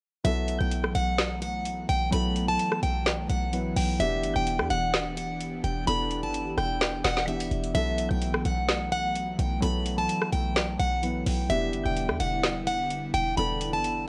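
A bright, boxy plugged-in steel-string acoustic guitar carries the picked melody up front in this melancholic, menacing trap excerpt at 128 BPM in a half-time feel, its fresh strings ringing over a dark, mellow concert grand piano and an airy, breathy pad with chorus sitting softly in the background. A punchy, tight 808-style bass and an electronic trap kit with a woody snare, metallic hats and rim clicks drive the rhythm, the drums roughened by vintage 12-bit sampler grit. The harmony alternates between B7sus4 and Em7, and the whole mix sits in studio reverb with the warbling pitch drift of worn cassette tape, tuned slightly flat at A4 = 437 Hz.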